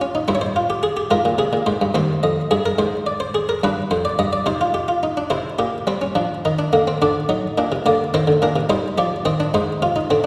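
In a straight 6/8 lilt at 71 dotted-quarter beats per minute, this solemn, driving baroque-style three-part fugue is carried entirely by a solo buff-stop harpsichord in the Flemish style, tuned to A4 = 441 Hz and spanning Eb2 to Eb5. Its muted, lute-like pluck sounds airy, dry and up front, set within the long 1.8-second reverb of a recital hall. The harmony moves from C minor colours toward a cadence on Cm at 4.5 s, then turns at 5.3 s through C7, F5, D7 and Bbadd9 to Eb and on to Fm/Ab before the cut from the longer piece at 10.3 s.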